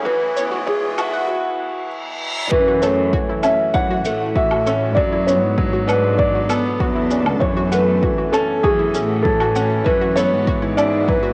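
Piano and strings electronica in a moving, melancholic mood, where a soft felt-muted upright piano carries the melody over a clear baby grand riff, a distant, reedy bowed cello section on the sidechain-pumped bass, a cloudy granular pad, a chorused analog pluck arpeggio in the background, a punchy overdriven electronic kick with shaker and woodblock, and a riser and reverse cymbal that build through the opening until the drop at 2.5 seconds, all steeped in wet spring reverb and the worn feel of a home cassette recording.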